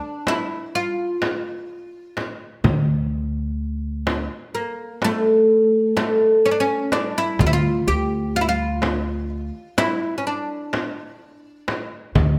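Lightly reverberant, this soulful, longing passage cut from a longer Arabic maqam ensemble piece in 10/8 opens at 0.0 s with a deep, woody, plectrum-plucked fretless oud carrying the melody up front, joined at 0.3 s by a crisp metal-shell darbuka and a bright, hard-handed frame drum heard in a live room, before a thumpy pizzicato upright bass steps in close at 2.6 s.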